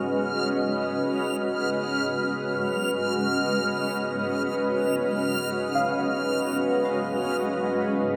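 A blurred, evolving granular cloud pad sits up front holding sustained chords in B lydian, while a worn, slightly out-of-tune tine electric piano plays mellow arpeggios through phaser and tape echo in the background, and a reversed, detuned, bright texture drifts above, all in free time within a wet digital concert-hall ambience, making for a peaceful, warm ambient passage cut from a longer piece.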